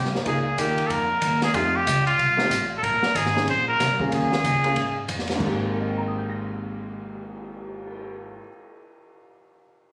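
A brisk swing at 187 BPM in Ab major drives this playful small-group jazz excerpt, where a nasal, straight-muted trumpet sings the melody up front with vibrato until 5.1 seconds over woody pizzicato upright bass, an open kit with dark cymbals and a boomy kick, and a clear, vintage grand piano that carries on to 9.3 seconds, all captured on a phone in the room with light reverb.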